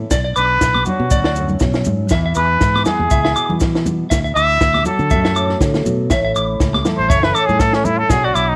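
A nasal, breathy trumpet with a straight mute leads this joyful highlife guitar band passage up front, with light vibrato and scooped notes over a Bm, E, Dadd9, A progression, while a full-bodied fingerpicked nylon-string guitar with audible finger squeak, a direct fingered electric bass, clean picked electric guitar arpeggios with slapback echo, a distant, roomy cocktail drum kit with punchy kick and high-tuned snare, grainy maracas and ringing congas played with soft hands in the background fill out the swung groove.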